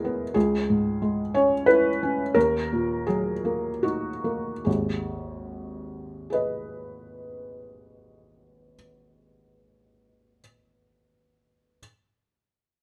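In a rubato 3/4 that drifts between 71 and 95 BPM and slows over the first 4.7 seconds, this wistful neoclassical minimalist piano fragment in G# minor unfolds over C#m and D#m before settling on G#m at 4.7 seconds. A felt-muted upright piano plays alone across its span from G#1 to D#5, its soft, mellow tone and short sustain sitting up front and close. Light reverb lends the intimate performance a natural sense of space.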